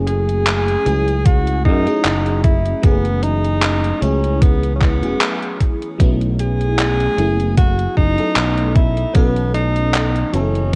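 A lightly swung 4/4 groove at 76 BPM sets a slow, melancholic and nostalgic vaporwave mood in F# dorian, tuned a touch flat to A4 = 437 Hz, in this short section cut from a longer piece. A detuned 8-bit drum machine ticks out overdriven handclaps and hi-hat through gated reverb, and a thumpy, overdriven electronic kick enters up front at 1.3 s. Underneath, a fingered electric bass sits forward with a bright, growly tone, while an FM electric piano layered with a soft pad supplies dreamy, detuned chords coloured by phaser, ensemble chorus, analog delay and gritty 12-bit sampler texture. Over the top, a breathy tenor saxophone carries the jazz-style solo melody with scooped notes, light vibrato and a smooth top, trailed by tape echo. The harmony moves from F#m7 to B7sus4 at 6.0 s, and the whole mix has a dry, cassette-tape character.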